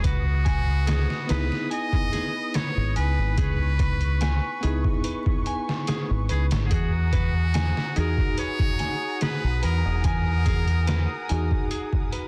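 Muffled, pitched-down sampler-style drums with a thumpy kick and overdriven grit lay a straight 72 BPM trip hop pulse in 4/4 under a round, up-front dub bass, while a worn, slightly out-of-tune tine electric piano with harmonic tremolo and tape echo, clean picked guitar arpeggios and veiled con sordino violins in the background move from C#m9 to Emaj9#11 beneath a buzzy, brilliant metal-muted trumpet melody with scooped notes, vibrato and 12-bit sampler grit, all in a dark, cinematic excerpt with vinyl crackle on a dense, heavily limited master that fades out from 11.2 seconds.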